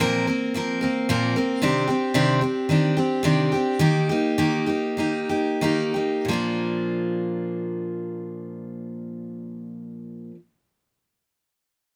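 A bright, full-bodied picked steel-string acoustic guitar with fresh strings and audible finger squeak sits up front in this peaceful, pastoral folk excerpt, moving through Bbsus2, Cmadd9 and Eb chords as it slows down between 1.6 and 6.3 seconds, then settling on Bb before it stops at 10.4 seconds, all captured with close, detailed microphones and light reverb.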